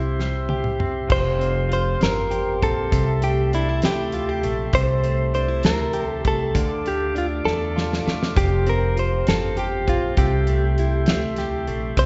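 A gentle 6/8 lilt at 66 BPM, counted in dotted quarters, carries this romantic, tender pop ballad in F major, cut from a longer piece. A damped 70s drum kit of crash, hi-hat, kick, snare and toms sits up front with a fat snare, tight kick and rolled-off top, opening with a fill at 0.2 seconds and adding another at 7.5 seconds. Beneath it, a woody, growly pizzicato upright bass on steel strings anchors the low end. A clean, compressed, direct-recorded electric guitar picks the accompaniment, while a tonewheel organ holds clear sustained chords through a slow rotary speaker. At 1.1 seconds a second direct-recorded guitar, bright and up front, enters with the picked melody over chords moving through Fsus2, C6, Am7/C and Dm. A moderate concert hall reverb, with the sound capped at 7.7 kHz, lends the room a soft, spacious glow.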